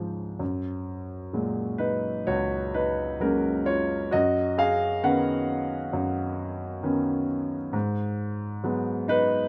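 A smooth, vintage-toned grand piano sits up front alone in this tender classical fragment in F# major, drifting with rubato around 66 BPM through F#add9, Badd9/F# and G#m7 harmonies across roughly 9.5 seconds, its low Db2 to high F#5 span softened by light reverb.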